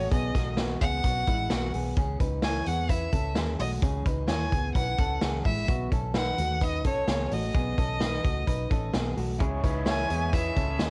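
A home cassette recording with light studio reverb frames this restless, wistful excerpt of jangly indie pop at 129 BPM in C# minor, moving from C#m to B and back. A focused, bowed violin with vibrato and cassette tape coloring carries the melody over picked, clean electric guitar arpeggios through tape echo, a dark, round, foam-muted fingered bass, and a gritty, saturated garage drum kit with a punchy kick that sits up front. At 9.4 seconds, a bright overdriven garage guitar joins, along with a woody, slightly detuned upright piano in the background.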